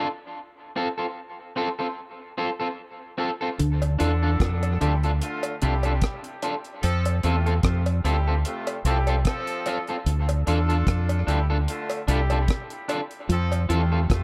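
Hypnotic and meditative, this dub reggae excerpt at 74 BPM in D minor opens with a twangy, slightly broken-up electric guitar playing alone until 3.6 seconds. At that point a round, punchy fingered bass, a dry, dark drum kit with a tight kick, hi-hat and rim click, and a clean picked guitar riff in the background arrive, soon joined by a close cowbell set back in the mix and, at 4.0 seconds, a clear, vintage horn section with light vibrato, while the guitars, cowbell and horns trail dub echo through an echo-heavy mix with light reverb.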